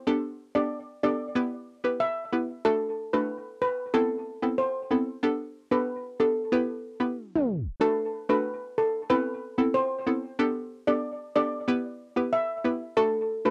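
Sultry and hypnotic, this dancehall excerpt sets a hollow, bouncy square-wave pluck with chorus over a cycling Gadd9, Em, D and Amadd9 progression, while a metallic, shimmering steel pan carries the melody through cassette tape and analog delay in a booth with moderate ambience, with a tape stop at 7.2 seconds.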